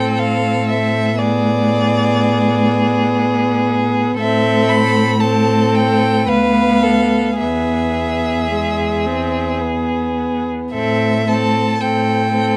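A focused first violin carries the melody over a smooth second violin line, a warm viola and a dark, woody cello bass, all four bowed with vibrato in this solemn, elegiac string quartet movement in a rubato three-four, whose harmony gathers on an E chord at 7.4 seconds before settling back on A minor at 10.7 seconds, captured by close, detailed microphones in a light reverb.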